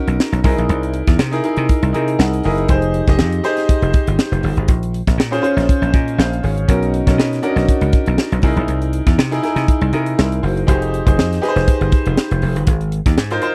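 The recording is dry and close, with little reverb, in the manner of a 1970s studio session, and every part sits up front. This glossy, breezy slice of polished 1980s jazz-funk pop moves in 4/4 with a light swing on the sixteenths, and it is cut from a longer piece. A tight acoustic funk kit of hi-hat, tight kick and high-tuned snare drives the groove, while an electric thumbed slap bass, bright, punchy and foam-muted, supplies the low end from the first moments. A clear, natural concert grand piano, given a lush chorus, comps through chords such as C7alt, Fm7, Bbm9, Bmaj7 and Ab6, with long sustain and a deep bass resonance. The piano steps forward with short fills at 1.9 seconds and again at 13.2 seconds, just as the passage closes.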